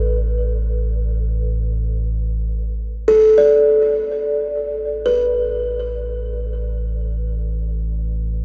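Melancholic yet serene, this short ambient excerpt drifts in free time, cut from a longer piece and tuned slightly low with A4 at 437 Hz. A buzzing kalimba plays arpeggios between A4 and D5 throughout its 8.4 seconds, its woody, hollow-box pluck ringing up front with a thumb-struck rattle and trailing tape echo. Beneath it, a round analog bass holds a deep A1, sustained and evolving, blending sawtooth, sine and triangle tones behind a fast attack. The harmony rests on a single Asus2 chord. A huge, wet reverb with a 7.6-second decay surrounds the parts, and the overall production feels dark and warm.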